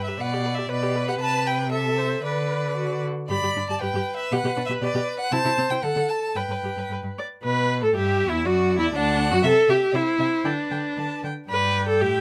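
Close, detailed microphones and a light reverb give this recording a clear, intimate sound, and it is cut from a longer piece. It is a quick, cheerful and graceful classical-period movement for string quartet in G major and 2/4, moving at about 110 to 123 BPM with a rubato feel. Each of the four bowed instruments is played by one player with vibrato and a rich tone. The first violin carries a smooth, even melody, while the second violin sounds more distant, adding an expressive second line with portamento. The viola sits up front with a focused accompaniment, and the cello, also up front, supplies an expressive bass with portamento. The opening section returns at 7.4 seconds, moving through harmonies such as Dadd9, C and G/D before settling on G5 at 11.5 seconds.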